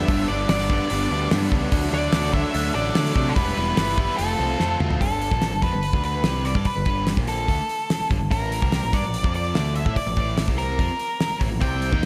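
A straight, driving 4/4 pulse from a dry, up-front 70s drum kit with a fat snare and tight kick pushes this confident classic rock excerpt, rolling through a fill just before the second section at 5.0 seconds. An up-front, dark octave-fuzz lead guitar carries the melody with slapback echo, over a growling, overdriven picked bass and a bright cranked stack guitar sitting in the background with spring reverb. A biting overdriven guitar plays a riff through the opening section, drops out at 5.0 seconds and returns at 11.6 seconds, all set in a lush hall for a big arena sound.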